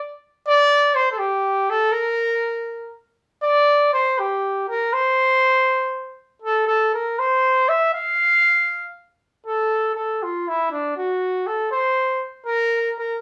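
Romantic and proud, this short Mexican folk passage in a straight-feel 6/8 is carried by a lone trumpet that enters at 0.5 s and spans D4 to F5 with a mellow, classical-style tone and soft attack. The trumpet sits up front yet sounds slightly distant, framed by a roomy, wet studio reverb of a live single-room performance, and the phrase moves into a new section at 9.4 s before the piece is cut off at 13.2 s.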